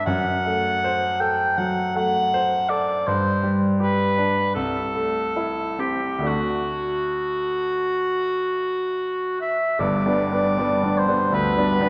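A mellow, soft-attacked oboe carries the melody in this melancholic, elegiac romantic classical duo in G major, moving with rubato at roughly 64-82 BPM in 4/4 over a brilliant, bright grand piano accompaniment whose harmony passes through F#dim, G, Am/C and D before a new section settles on G at 9.8 s, all set in a wet scoring-stage reverb with a 1.5-second decay and cut from a longer piece.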